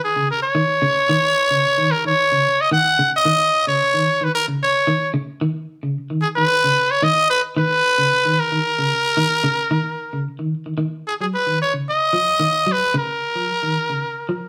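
A lightly swung sixteenth-note groove at 112 BPM in 4/4 drives this defiant, intense afrobeat fragment. Up front, a raspy, close-miked growling trumpet carries the melody with vibrato and scooped notes. Alongside it, a twangy, slightly broken-up electric guitar with tremolo plays fingered arpeggios. The band is captured live in one room with moderate reverb, and the harmony moves from C#sus2 to C#9 at 10.8 s and to A#m at 12.9 s.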